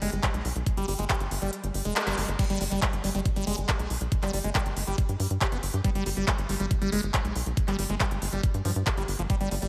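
A lush hall reverb soaks this dreamy mix, though the drums and basses still sit up front. This driving, alien psychedelic trance passage, cut from a longer piece, opens over a rootless F minor add-nine harmony. A squelchy, resonant acid bass carries the riff with a filter sweep, phaser, sidechain pumping and a diffuse ambient delay. Beneath it, a tight, punchy sequencer bass with sawtooth and square-wave tones, a fast-attack filter pluck and tube saturation adds a dark drive. A layered electronic kit brings crisp hats, handclaps and crash cymbal alongside a knocking kick. The kick drops out at 1.5 seconds, the band hits an accent at 2.0, and the drop lands at 2.4 seconds as the harmony falls away and the kick returns beneath the bass riffs and the kit.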